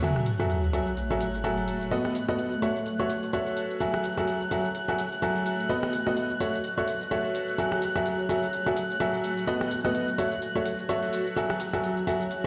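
This energetic, soulful piano house cut moves at 127 BPM in 4/4 with a 57% swing on the sixteenths, the house drum kit's metallic hi-hat, rim click and shaker sitting low in the mix under low-pass filtering and a small room reverb. Up front, a clear, woody upright piano plays a riff from F#3 to E5 with audible action noise and a dub echo, cycling through F#m9, B7 and A6 in F# dorian. Behind it, a chamber string section holds sustained chords up at F#6 with light vibrato and a reedy, gut-string period tone, while a granular cloud pad spanning A3 to A5 adds a blurred, evolving, detuned haze with its own built-in reverb. An electronic sub drop lands as an impact at the opening and runs until 1.9 s. The whole piece sits in a moderate small-room ambience, heard as if played on a big sound system in a bare stone room.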